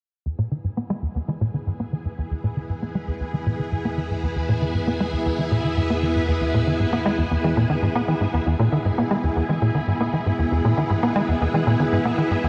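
A tight, punchy sequencer bass riff drives a straight 4/4 pulse through this hypnotic, expansive stretch of ambient space music, its nasal sawtooth-and-square tone sitting up front with subtle chorus and delay while a filter sweep reshapes it over the first 8.5 seconds. Above it, a vintage string machine full ensemble fades in with sustained, bright chords thickened by ensemble chorus and shimmer reverb, and an evolving analog drone with pulse-width and ring modulation hums in the background from 2.0 to 8.4 seconds. At 8.5 seconds a very quiet, warbling unison pluck with detuned, wave-folded timbre adds arpeggios, all set in a plate reverb and an echo-heavy mix cut from a longer piece.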